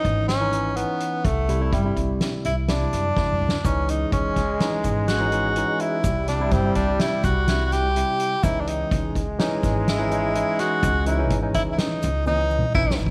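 Driving and tense, this progressive instrumental moves at 125 BPM in 5/4 with a straight feel, cut from a longer piece and built on alternating C#madd9 and C chords. A bright, up-front tenor saxophone solos with light vibrato and scooped notes over a barky, lightly overdriven tine electric piano played through a combo amp, a woody, dark pizzicato upright bass, and a soft-mallet drum kit with a fat snare, boomy kick, and fills at 3.2 s and 12.3 s. From 3.6 s a breathy trombone adds a second line with vibrato, joined by a grainy, very quiet egg shaker, and the band sits in a moderate plate reverb.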